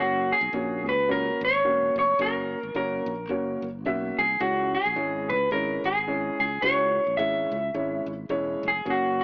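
Up front, an electric guitar through a small old amp carries the melody with a picked, slightly broken-up, lo-fi tone over a dark upright piano whose woody, boxy voicings ring with long sustain and audible action noise. Beneath them, a bright fingered electric bass adds a growly, punchy low end, and the whole passage has the thin character of AM radio in a small room with light reverb. This passionate, driving snippet of uptempo 1960s-style soul moves at 108 BPM with a swung feel in C# dorian, shifting from F# to C#m at 4.4 seconds.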